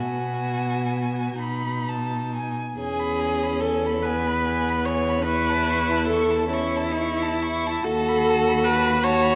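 In a rubato 6/8 at about 41-53 BPM, this tender excerpt of a slow romantic string quartet movement in E major sets a distant, smooth first violin melody high above a focused second violin line, while an up-front viola with clear vibrato and a close, rich-toned cello bass carry the accompaniment through the moderate reverb of a scoring stage, moving from B to E before settling on B7/D# at 7.9 seconds.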